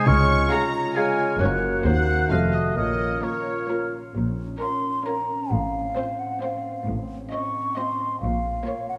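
Heard through the wet, spacious reverb of a scoring stage, this brief fragment of a fast, dramatic romantic movement for symphony orchestra moves in a brisk three at 133 BPM in B-flat minor, with a lively, spirited mood. Lush, bowed violins carry the melody from 0.5 seconds, set back at a distance, while a second violin line, background violas, close cellos and up-front double basses give the strings a rich, smooth body with even vibrato. An airy, hollow flute sits prominently over the texture as a second line, and a ringing, thumb-plucked harp supplies arpeggios throughout. In the opening bars a bright clarinet, a roomy oboe with light vibrato, a mellow bassoon and a dark, tight French horn section holding sustained chords fill out the sound before the clarinet, oboe, bassoon and horns fall away by 3.9 seconds. The harmony passes from D-flat and G-flat through a half-diminished chord and F7b9 back to B-flat minor, then the phrase repeats over F-based dominant chords that resolve once more to B-flat minor.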